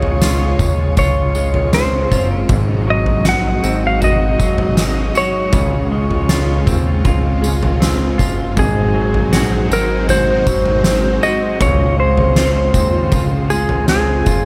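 An oversized, low-tuned drum kit drives a straight 4/4 pulse up front, its punchy kick, fat snare, toms and tambourine saturated and gritty in a bright, pumping stone room, while a thick, detuned sawtooth analog bass with a filter sweep and moving notch sustains beneath. Over this dreamy, blissful dream pop bed, a twangy, compressed slide lap steel carries the melody through digital delay, and a hollow-body semi-hollow electric guitar picks clean arpeggios with subtle chorus and delay in the background. A vintage, warbling string machine of violas holds slow-attack chords with ensemble chorus, and a dark, fingered electric guitar adds very quiet accompaniment, with light reverb and small room ambience around the mix.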